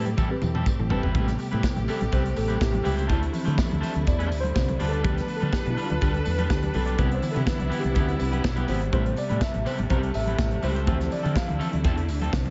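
Sultry and driving, this disco excerpt opens with a drum fill before the mellow tine electric piano takes a solo from 1.2 seconds over chords moving from Am9 through Dm7, G7/D and Cmaj7. A round, dark fingered bass and a punchy, polished drum kit sit up front, while a twangy electric guitar at the edge of break-up with spring reverb and a focused, bowed string section holding sustained chords fill the accompaniment. Very quiet soft-handed congas and a jingly, compressed tambourine add percussion, all in a light studio reverb with a soft top end.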